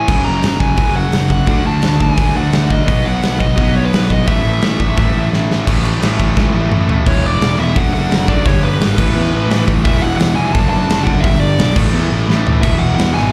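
Heard through a venue's PA with club reverb and small-room ambience, this energetic, rebellious punk rock excerpt features a dark, smooth overdriven lead guitar melody with slapback echo over a sludgy, double-tracked rhythm guitar riff, a growly fuzz bass, and an up-front acoustic drum kit with a punchy kick and bright stone-room crash whose fills arrive at 5.3, 6.4 and 12.3 seconds as the chords cycle through E5, D/F#, G and A5.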